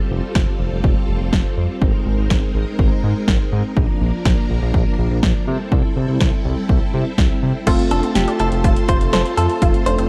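A dark, gently reverberant production with a digital sheen frames this short, upbeat synth-pop fragment in 4/4, carrying a nostalgic glow. A shimmering string machine opens with soft-attack sustained chords, thickened by ensemble chorus, while a smooth, detuned synth bass with a hint of saturation and vibrato sits up front from the start. A punchy analog drum machine arrives at 0.4 seconds with tape-flavored kick and snare, hi-hat and crash cymbal, as the harmony moves through Fadd9, Abadd9, Bb and C6. At 7.7 seconds the arrangement blooms on an F chord as a funky, mellow polysynth comp and a squelchy, resonant blip pluck join, the pluck's arpeggios tucked into the background with phaser and slapback echo. Just after, at 7.9 seconds, a clean, compressed electric guitar recorded direct adds a picked second line dressed in spring reverb and slapback echo.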